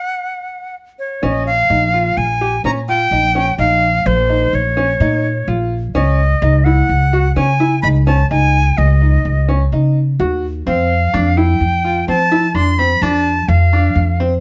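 Progressive instrumental band music in 5/4 at 127 BPM, with a driving, brooding mood and tuning set to A4 = 435 Hz. A reedy, airy flute with vibrato, a crisp chiff and a slapback echo carries the melody up front, playing alone until the brilliant piano arpeggios and a woody, growly pizzicato upright bass enter at 1.2 seconds. The harmony moves from A#m through C#sus2 to F, captured with close, detailed microphones and light reverb in a fragment cut from a longer piece.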